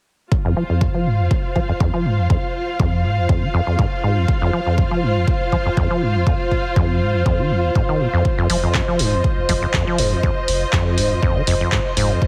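A punchy, up-front electronic kick drives this trippy acid house excerpt in a lightly swung 4/4, where a squelchy, resonant sawtooth acid bass riff carries a filter sweep throughout over dark, woody bowed strings and a detuned analog pad with chorus sitting in the background, all pumping to the sidechain, until a round sine sub bass and an analog drum machine's handclaps and hi-hat join at 8.5 seconds, everything wrapped in light reverb and a heavily compressed, radio-like sound.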